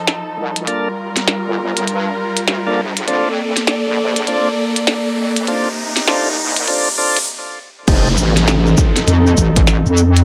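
Veiled, muted chamber strings open this playful, gritty glitch hop excerpt with dark bowed chords that pump against the beat. A glitchy drum kit with clicky hats, a tiny snare, shaker and crash sits up front on a swung groove, and a heavy, detuned wobble bass, saturated and chorused, fills the low end. A smooth tonewheel organ plays stabs through a slow rotary speaker, filtered and delayed, over a progression of seventh chords. An electronic riser lifts through the build-up until a brief stop at 7.3 seconds, and the same effects part also carries a downlifter. The drop at 7.9 seconds brings in a punchy, overdriven electronic kick drum, and the organ falls away at 8.1 seconds, all within a light reverb.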